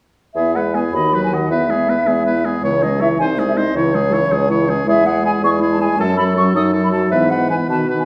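A wet recital-hall reverb with a touch of small-room ambience surrounds this short cut from a graceful, cheerful classical-period movement for wind quintet, moving in a rubato 6/8. The silver concert flute carries the melody from 0.3 s with a pure, hollow, tongued tone and vibrato. From 0.4 s it is joined by the soft-attacked oboe on a second line, the close-miked French horn with clear vibrato and the mellow clarinet in the background as accompaniment, and the warm bassoon with light vibrato on the bass.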